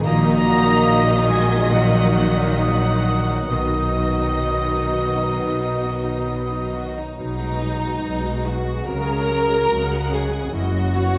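Veiled, con sordino violins carry the melody of this moving, tender cinematic film-score excerpt at a rubato 63-74 BPM in 4/4, joined by a second muted violin line, dark violas, a lush studio cello section and close double basses below, a ringing concert harp playing arpeggios, a very quiet mellow French horn section holding chords, and an airy silver flute and a clarinet adding second lines until 6.8 s, the whole bathed in wet scoring-stage reverb as the harmony settles into B major at 7.2 s.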